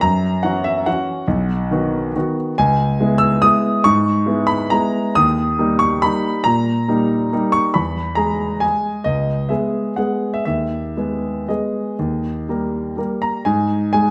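Sparkling and graceful, this short classical piano waltz in 3/4 moves with a rubato feel, its tempo flexing between 112 and 148 BPM. A single grand piano plays solo from the start to 14.1 seconds, ranging from B1 to E6, its intimate, natural tone placed up front with audible action noise. The harmony passes through F#7, B, C#m7, D# and E before closing on G#m/D# and D#, all set in a wet recital hall reverb, and the passage is cut from a longer piece.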